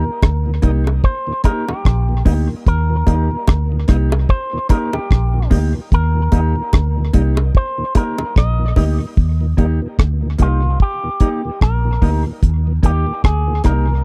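A deep, dry reggae drum kit sits up front with a tight kick, hi-hat and rim click alongside a round, foam-muted fingered bass that carries a dark, saturated tone in this sunny, uplifting roots reggae excerpt at 74 BPM in Eb major with a swung sixteenth-note feel. A clean guitar through an envelope filter plays the melody with dub echo over a mellow, compressed rhythm guitar, also echoed, while a thick, lightly overdriven tonewheel organ turns through a slow rotary speaker with tape echo. Low-tuned bongos add close percussion until about 9.0 seconds, as the piece moves into a new section at 9.2 seconds, all captured in a close 1970s-style studio sound with little reverb.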